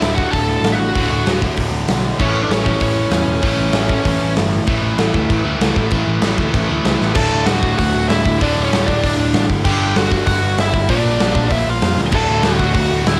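A dry, lo-fi home cassette recording captures a rowdy, upbeat punk rock excerpt at 193 BPM in D major, where a dark, distorted bluesy lead guitar sits up front with the melody (dropping out between 4.3 and 7.2 seconds) over two bright, crunchy overdriven rhythm guitars in the background, a very quiet sludgy guitar riff, a warm amped picked bass, and a punchy, up-front acoustic drum kit in a stone room that throws in fills at 7.0 and 12.0 seconds.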